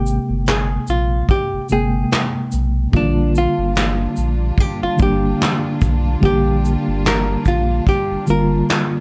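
A dark, hollow-body archtop guitar picks a clean melody over a reedy electric piano with fast tremolo and a deep, round sub bass. A brushed drum kit of kick, snare, hi-hat, shaker and handclaps joins at 0.1 seconds, carrying vintage 12-bit sampler grit and a rolled-off top. This nostalgic, mellow lo-fi hip hop excerpt moves at 73 BPM with a light swing in Bb major, shifting from Abmaj9 to Bb6 at 2.9 seconds as a lush bowed string section enters with sul tasto vibrato, sitting softly beneath the rest, all wrapped in light reverb and cassette tape coloring.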